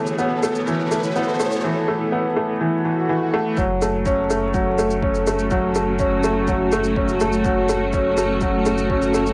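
A clear, woody upright piano riff sits up front, slightly detuned with audible action noise and cassette-worn delay, over a blurred granular cloud pad on Aadd9 and a faint overdriven shaker, while a riser and swell build for 3.6 seconds before the drop lands on F# minor with a round, wave-folded analog bass and a deep, overdriven kick in the background, giving this cinematic, moving piano and strings electronica excerpt at 124 BPM an intimate home-cassette character.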